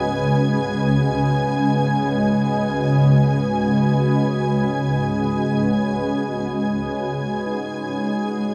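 Ambient in free time, this reflective, spacious passage cut from a longer piece rests on a cloudy, evolving granular pad that sits up front, holding blurred, detuned sustained chords around a C#9sus4. A clear, lush violin section adds a smooth, bowed texture with vibrato high above it. At 7.5 s a gritty, barky overdriven tine electric piano enters very quietly with arpeggios on D#4, all bathed in a huge, wet reverb and a dark production.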